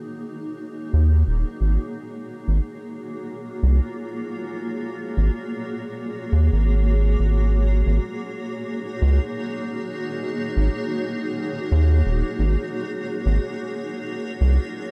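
Ambient dub at 89 BPM in 4/4, with a light swing on the sixteenths, this hazy, spacious excerpt is cut from a longer piece. A granular cloud pad holds sustained chords from the very start, its slow attack and long release giving it a blurred, evolving, full-bodied texture, thickened by detuned unison voices and its own built-in reverb. At 0.9 seconds a round analog bass enters, deep and dark with a fast attack, sitting up front in the mix well above the softer pad. The harmony drifts between Ab9sus4 and Gbmaj9/Ab over a held Ab foundation, returning to the first chord at 7.3 seconds. A light reverb surrounds the whole recording, reinforcing its floating, cloudy atmosphere.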